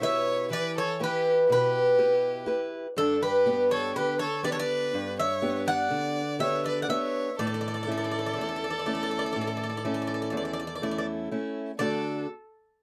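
A metallic Greek bouzouki carries the melody up front, its picked double strings ringing with some octave-doubled courses between A4 and F#5. This short, peaceful passage of Greek folk cut from a longer piece moves in 9/8 at 122 BPM (eighths) with a straight, calm feel. A single bowed violin plays a clear, focused second line close behind, with vibrato. A fingerpicked steel-string parlour guitar sits up front in the accompaniment, its boxy tone and fresh strings showing finger squeak. The harmony moves from E minor to G at 3.0 s, then to A, and settles on D at 11.8 s. The sound is a dry, close 1970s-style studio recording with light reverb.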